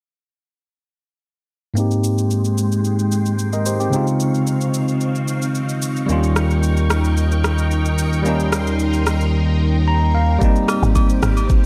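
Soulful amapiano excerpt in which a bright, bell-like tine electric piano and lush, vintage string-machine chords with sidechain pumping ride over a smooth R&B kit of knocking kick, rim click and shaker; a fat, detuned analog bass joins at 6.1 seconds, and after a silent gap and an electric piano fill, the drop at 10.4 seconds ushers in agogo bells and a woody, punchy log drum bass, all set in light digital ambience.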